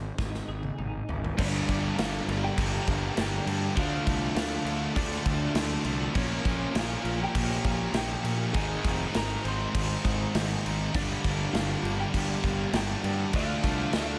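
Cathartic and angsty, this quiet-loud alternative rock excerpt opens with a twangy twelve-string electric guitar arpeggio shimmering with tremolo, growly fuzz bass and a drum fill from a punchy, up-front kit with bright cymbals, then at 1.4 seconds bursts into a heavy wall of picked riffs from a thick fuzz guitar, a double-tracked overdriven guitar and a very quiet cranked stack guitar, while a clean fingered electric guitar carries the melody through lush chorus above very quiet bowed symphonic strings, all in light reverb.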